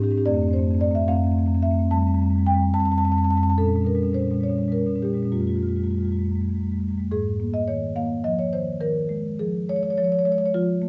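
Warm and flowing, this short excerpt from a contemporary classical piece for solo marimba moves in a rubato 6/8 at about 65-74 BPM, its woody, round rosewood tone from soft mallets ranging from F2 to A5 as the harmony drifts from F major through Am7/F, Bbm6 and Fadd9 before shifting to Ab major at 7.1 seconds with Absus2 and Eb11, all set in a wet stone-room reverb heard from further back.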